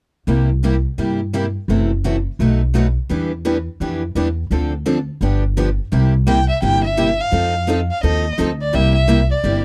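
This swinging, playful stretch of acoustic string swing rides a brisk 170 BPM in 4/4, with its eighth notes gently swung and the harmony centred on C mixolydian. Two picked steel-string acoustic guitars carry the accompaniment from 0.3 seconds, both bright and boxy with a fresh-stringed parlour tone, one up front and the other sitting in the background. Beneath them an upright bass, plucked on gut strings, supplies a woody, thumpy low end close to the listener. The opening passage moves through C7, F#m7b5, B7, Em7, Dm7 and G7 before a second passage turns on C7 and F7. At 6.3 seconds a single bowed violin enters up front with the melody, its soft attack, vibrato and portamento giving an expressive, singing line. The sound is dry and close, in the manner of a 1970s studio, and the recording is cut from a longer piece.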